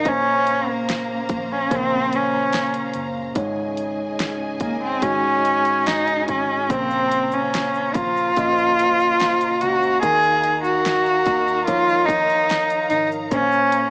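Recorded at home on cassette with a small-speaker sound and a moderate spring reverb, this longing, melancholic pop ballad in Bb minor moves at a slow 72 BPM over chords such as Bbmadd9, Absus4 and Ebsus2. A nasal, focused solo cello carries the bowed, vibrato-rich melody up front, while a bell-like tine electric piano and a lush, smooth symphonic string section, both with a cassette-tape colour, supply accompaniment and sustained chords. Underneath sit a dark, foam-muted electric bass in the background and a punchy, produced electronic drum kit with a fat snare and bright hats, also tape-tinged, and a grainy, very quiet egg shaker joins at 6.7 seconds.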